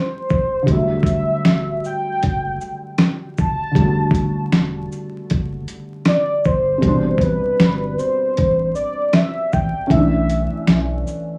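A gritty, overdriven sampler-style drum kit drives this melancholic, hazy lo-fi hip hop excerpt at 78 BPM, its thumpy kick, fat snare, hi-hat, shaker and finger snaps swung and up front with cassette-tape color, all set against vinyl crackle. A felt-muted upright piano plays dark, intimate accompaniment with audible action noise through plate reverb, while a round sine sub bass sits deep underneath and a velvety sawtooth-and-triangle synth lead carries the melody with chorus, vibrato, cassette tape and analog delay. The chords move between Am11 and Em11, the key settles into A minor at 6.8 s, and Bm11 arrives at 9.9 s.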